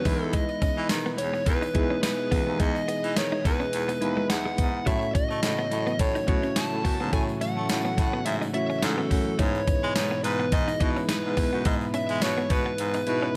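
A lightly swung sixteenth-note groove in 4/4 drives this romantic, nostalgic slice of 1980s-style pop, carried by a clean 12-bit drum machine whose thumpy kick, medium-tuned snare, hi-hat and tambourine sit up front in gated reverb with a tape-tinged, small-room character. A raspy, gritty baritone saxophone plays the bass line with a soft attack and light vibrato, while a very quiet acoustic tambourine adds a jingly shimmer underneath. Soft, round electric-piano-like synth keys with chorus provide mellow, decaying accompaniment, and a vintage string machine of sawtooth violins holds bright, slow-attack chords in the background. A clean, scooped electric guitar, recorded direct with analog chorus and delay, repeats a picked riff further back in the mix. Over it all, a dark fuzz lead guitar with distortion and delay sings the melody as the harmony moves from Emaj7 to A6 at 4.9 seconds and back to Emaj7 at 9.4 seconds.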